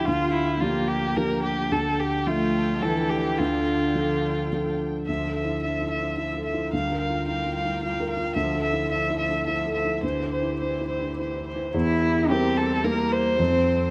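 A rubato piece in 3/4 at 109 BPM, this neoclassical work for piano and strings sits in D minor, tuned a touch low to A4 = 438 Hz, and carries a longing, melancholic mood through a short passage cut from a longer work. A felt-muted upright piano, mellow and intimate with a thick felt tone, plays the accompaniment up front across the full 13.9 seconds. A single muted violin carries the melody, veiled and con sordino, with vibrato and portamento, while a lone muted cello sounds a second line from a more distant place, its soft attack and light vibrato adding shadow beneath. A muted studio string section holds dark sustained chords in the background, and a moderate scoring-stage reverb with a 1.6-second decay gives the group a gentle sense of space. The harmony circles around a pedal D through Gm7/D, Dmadd9 and Cadd9/D, then turns toward Edim at 11.7 seconds and ends on F7 at 13.4 seconds.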